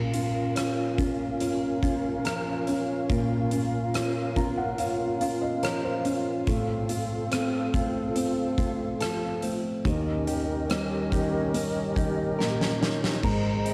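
A dry, lo-fi cassette home recording opens this heartbroken, longing pop ballad excerpt in Bb harmonic minor, moving at a slow 71 BPM in straight 4/4 through Bbm, F/A, Eb7 and Abadd9. A mellow felt-muted upright piano with audible action noise carries the accompaniment and adds a fill from 3.9 to 6.5 seconds, while a breathy, vibrato-laden flute ensemble holds sustained chords and a bright, scooped, direct-recorded clean electric guitar picks arpeggios in the background. An up-front arena drum kit with a fat snare, punchy kick and bright cymbals, colored by cassette tape, plays a fill before a dark, round, foam-muted electric bass enters at 13.2 seconds.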